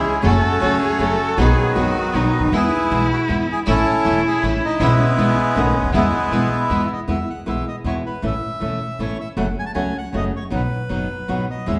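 A reedy, airy bandoneon carries the melody from the first moment of this playful, elegant tango in E major, taken at 157 BPM in a rubato 3/4, over up-front fingerpicked flamenco guitar, a woody, thumpy pizzicato upright bass, an expressive bowed cello line with vibrato and portamento, and bright, earthy chamber string stabs in the background, the cello and strings falling away at 6.9 s, the piece heard in the reverberant ambience of a recital hall.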